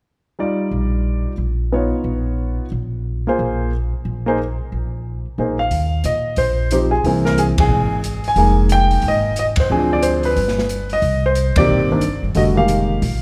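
A brisk 180 BPM swing in 4/4, with lightly swung eighths, drives this sophisticated, relaxed jazz piano trio fragment in Eb major, cut from a longer piece. A concert grand piano carries the melody from the start, sounding intimate and natural up front, with deep bass and audible action noise. A woody pizzicato upright bass on steel strings joins almost at once, sitting close and warm beneath it. At 5.7 s the open drum kit enters with a dark, smooth small-room sound: dark cymbals on ride and hi-hat, a medium-tuned snare and a punchy kick. The trio then lands accents together at 7.5, 9.5 and 11.5 s. The harmony opens on an Ebmaj9, then moves through Caug7, Fm11 and Dm7b5 to Cm7 in the second half, and a moderate concert hall reverb with a 2.4-second tail surrounds the whole performance.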